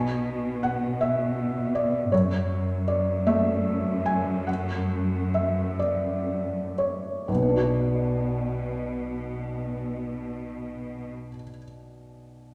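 A felt-muted upright piano provides the accompaniment in this emotional film-score excerpt, its soft, mellow tone and thin felt bringing an intimate closeness, with the clicks of its action audible up front. Beneath it, a cello section holds the bass line, its bowed, focused sound carrying a clear vibrato. The mood is moving and longing, unfolding in a compound 6/8 metre with a free, rubato pulse that slows down from 1.0 to 7.3 seconds. Harmony moves between B minor and F-sharp minor, returning to B minor as a second section begins at 7.3 seconds. The recital hall reverb is wet and heard from further back in the room, and the cellos stop at 11.1 seconds while the piano continues until 12.5 seconds, where this fragment of a longer piece is cut off.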